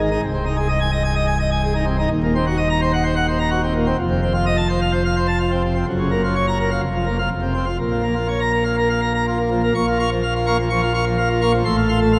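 A straight 4/4 pulse at 126 BPM drives this majestic, jubilant organ toccata in Bb minor, cut from a longer classical piece, where a solo pipe organ on a full plenum with mixtures rings brilliant and up front, its baroque voicing and chiff spanning C1 to Db6 as the harmony moves from Ab/C through F7 and Gbmaj7 to Bbm at 7.8 seconds before a new passage begins at 9.7 seconds and closes on F/A, set in a wet church reverb with a 3.5-second decay.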